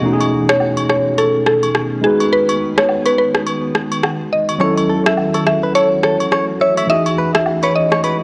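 Sultry and mellow, this short afrobeats excerpt moves at 105 BPM in 4/4 with a loose sixteenth-note swing, set in F# dorian over a B13, G#m7, F#m7 and Emaj9 progression. A worn, slightly out-of-tune tine electric piano sits up front with accompaniment, while a cloudy, blurred granular pad hangs in the background with its own built-in reverb. Acoustic agogo bells and woodblock recorded in a small room enter at 0.2 seconds, and from 0.5 seconds a woody, round mallet-like synth pluck carries the melody through chorus and analog delay, alongside an overdriven electronic rim click. At 4.6 seconds a bright, twangy clean electric guitar recorded direct joins with a picked riff fed through analog delay. The whole cut carries the dry, gritty character of hardware and cassette tape, with only light reverb.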